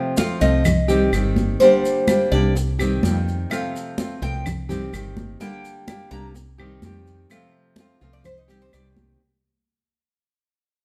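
A bright, fingerpicked nylon-string guitar and a Cuban tres open this short cut from a longer Cuban son and guajira piece, set at 126 BPM in a straight 4/4 and tuned to A4 = 442 Hz. The tres carries a solo throughout, its picked double strings ringing out metallic arpeggios with some octave-doubled strings, while the full-bodied, classical-toned guitar sits up front as accompaniment. Congas with a thick, high-tuned skin and soft hands join at 0.2 seconds alongside grainy, mellow maracas, and a dark, round, punchy fretless electric bass with a woody, hollow-body character enters up front at 0.4 seconds. Acoustic claves sit in the background. The harmony cycles through F, Cm and Gm, returning to Cm in between, and the passage fades out across its length inside a moderate large-studio reverb, keeping a warm, danceable mood.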